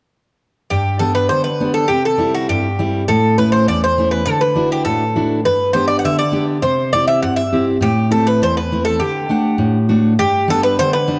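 A dark, warm production sets this short cut from a longer piece inside a moderate plate reverb with a long 3.3-second tail. It is Greek folk music for a bouzouki band, sunny and hopeful, moving at 101 BPM in a straight 2/4 in G major. The bouzouki carries the melody up front, its paired, partly octave-doubled strings giving a metallic edge to the picked line between F#4 and F#5. Beside it, a picked jumbo steel-string acoustic guitar supplies a full-bodied accompaniment across a broad span from E2 to F#5, with a little finger squeak audible on the strings. Both instruments sound together from 0.7 seconds to the end at 11.2 seconds, cycling through G, C, A, Dadd9, G, C, Am and D before the progression returns to G at 10.2 seconds.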